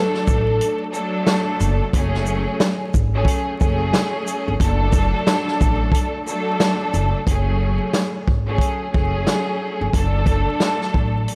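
A brief, mellow vibraphone note with digital delay rings over lush, bowed strings with vibrato and a cassette-tape tint at the start of this moody, tough boom-bap hip-hop fragment in F# minor at 90 BPM, before a punchy, up-front vintage drum kit of kick, snare, hi-hat and shaker arrives at 0.1 s and a woody, growly pizzicato upright bass joins at 0.3 s, set in light studio reverb and vinyl crackle as the swung 16th groove moves through D, F#madd9 and D/F#.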